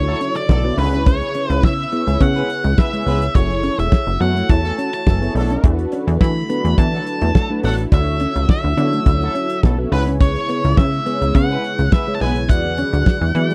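A dark, fuzzed-out lead guitar carries the melody from the first moment over round, chorused synth brass, a silky, barely audible string machine and a punchy, plucky analog bass, while a distant horn section adds a tight second line until 12.4 seconds, a clean, fingered electric guitar riff sits in the background, and a dry drum kit with a fat snare stands up front in this late-night, danceable early-eighties boogie funk excerpt.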